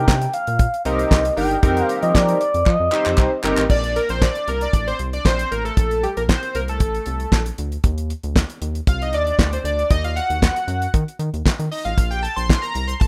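A glossy, chorused polysynth takes a solo at 3.7 seconds in this smooth, danceable early-eighties boogie funk fragment, after a dark, vibrato-tinged sawtooth lead sings the melody until 3.4 seconds, all over a rubbery, saturated square-wave bass and a dry, up-front 70s drum kit with a fat snare, tight kick, handclaps and a fill, set in light studio reverb in a rough home demo mix.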